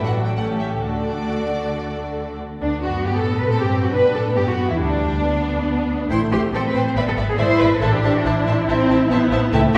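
The cello section's bowed line slides between notes with portamento and an expressive vibrato as it shares the bass role and climbs as high as C5. This is a cheerful, lively classical-period movement for string orchestra in 4/4, played quickly yet with a flexible, rubato feel, and it is cut from a longer piece. Above the cellos, the first violins carry the melody with a rich, smooth tone that reaches C6, while the second violins sing a warm, even second line and the violas fill in the accompaniment with a silky upper edge. The double basses sit up front, their bowed sound full and steady beneath the ensemble, and every section plays from the start through to 9.8 seconds. The orchestra is heard from further back in a concert hall with a lush, wet reverb, and the harmony moves from D through G before turning toward A minor at 7.8 seconds.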